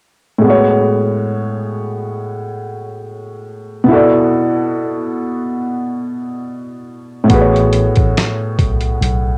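Cosy and nostalgic, this lo-fi hip hop fragment, cut from a longer piece, drifts along at 70 BPM in 4/4 with a lazy 16th-note swing, centred in A major. A felt-muted upright piano opens the track at 0.4 seconds, carrying the accompaniment with a soft, intimate, vintage tone that sits up front, further dulled by cassette tape colouring and a low-pass filter. The harmony moves from a lush Amaj13 to E9sus4 over B and back to Amaj13. At 7.3 seconds a boom bap sampler-style drum kit arrives, its thumpy kick, medium-tuned snare and hi-hat sounding compressed, pitched down and gritty with a 12-bit sampler crunch. At the same moment a mellow tine electric piano takes the bass role in a low register, clean and warm through its built-in speakers with a touch of tube saturation. The whole piece has the feel of a home cassette recording, set in a moderate studio ambience.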